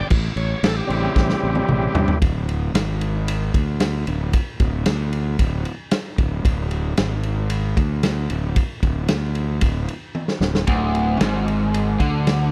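An overdriven tonewheel organ opens with a thick, slow-rotary solo on an A7#9 chord until 2.2 seconds, while a growly fuzz bass and a punchy, saturated garage drum kit drive this heavy, gritty blues rock and southern rock cut at 114 BPM, with a dark, double-tracked overdriven guitar riff entering at 10.7 seconds in a dry, close 1970s-style studio sound.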